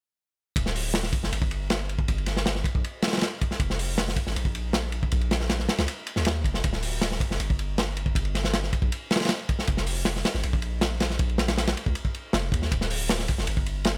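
A dry sound with little reverb frames this nostalgic, atmospheric drum and bass excerpt in a jungle vein, running at 158 BPM in 4/4 with a straight feel. Up front sits a crunchy breakbeat kit, gritty and saturated with a rolled-off top, dark cymbals, a medium-tuned snare, a tight kick, hi-hat and ride. Beneath it, a long, deep 808-style bass with a sine tone, fast attack and decaying tail sustains from D1 to Eb2, both parts entering at 0.6 seconds and carrying through to the end of this cut from a longer piece.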